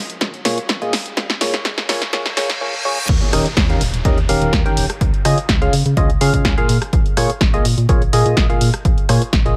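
Bittersweet and soulful, this short piano house cut from a longer piece opens with a build-up where a drum fill and a filter sweep on the hollow, nasal organ stab, up front with chorus, cassette tape grit, tape echo and sidechain pumping, unfold over a Bbm7 chord while a riser, reverse cymbal and downlifter sit in the background. At 3.1 seconds the drop lands, bringing in a dark, organ-like FM bass with sidechain pumping beneath the punchy, dry electronic kick and an analog drum machine of crash, hi-hat, rim click and an up-front snare. The harmony moves from Eb7 to Dbadd9 and back to Bbm7, all in a light, digital ambience.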